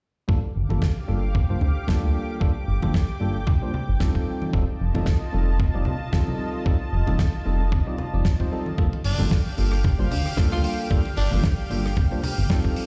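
A gritty, thumpy electronic kick and a glossy, chorused synth bass sit up front from the first moment of this cosmic, groovy nu-disco excerpt in G minor, alongside a clean tine electric piano with tape echo that also starts at 0.3 seconds. A lush, detuned sawtooth pad with slow attack and sidechain pumping settles in behind, while bright, saturated congas stay in the background and a dry, damped 70s drum kit adds hi-hat, rim click and a fat snare with a rolled-off top. The tempo is 113 BPM in 4/4 with a light swing on the sixteenths, and the harmony moves from Gm7 to F7 and back to Gm7. At 9.1 seconds a raspy, close-miked tenor saxophone enters with scooped notes, vibrato and tape echo for a brief pop-style solo phrase. The whole mix sounds as if played on a big sound system in a bare room, with large studio reverb.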